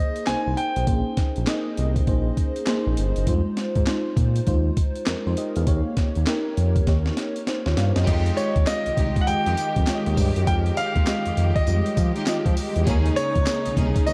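A gritty, compressed sampler-style breakbeat kit with a thumpy kick, handclaps and tambourine drives this slick, bouncy new jack swing piece in F minor at 100 BPM, swung on the sixteenths, while a smooth, detuned synth bass sits up front and a dreamy, warbling FM electric piano with a soft pad layer and chorus carries the chords from Bb9sus4 through Fm7 and Eb7. An intimate concert grand, with audible action noise and digital delay, plays the melody. After a drum fill, the second section arrives at 8.1 seconds: a close, rich string section holds sustained chords, and a background string section adds bowed stabs with delay over Fm9 and Eb7sus4, all within a dark production with light reverb and digital ambience.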